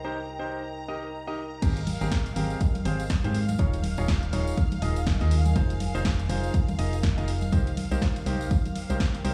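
This euphoric, joyful piano house excerpt opens on a clear, polished baby grand piano riff coloured by tape echo, over a hollow, organ-like FM bass with a fast, decaying attack and dark tone. Alongside them, a shimmering vintage string machine holds sustained violin chords through an ensemble chorus. A warbling, nostalgic lo-fi pad sits in the background with slow attack, detuned sawtooth tone and its own built-in reverb. At 1.6 seconds the drop arrives: a punchy electronic kick and an analog drum machine with crash cymbal, hi-hat and snare, both re-recorded in a large room, enter together with bright acoustic tambourine and congas that stay close and dry at the back of the mix. The string machine, piano, bass and pad all pump with the sidechain over a swung sixteenth-note feel in four, as the chords move through Cm7, Abmaj9, Eb9sus4 and Fm7 before returning to Cm7.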